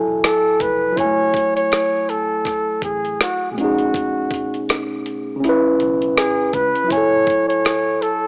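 Lo-fi hip hop at 81 BPM in F# dorian with a swung sixteenth feel, this hazy, melancholic excerpt from a longer piece sets a mellow, lightly vibratoed jazz-style flugelhorn solo entering at 0.2 s over a worn, slightly out-of-tune tine electric piano voicing F#m9, B13 and C#m7 chords through cassette-tape grit and a low-pass filter, while a dusty, compressed sampler-style kit with a thumpy kick, hi-hat and rim click sits up front, a dark, foam-muted fingered bass rumbles round in the background until 7.2 s, and moderate spring reverb and an AM-radio cassette tone wash over the whole mix.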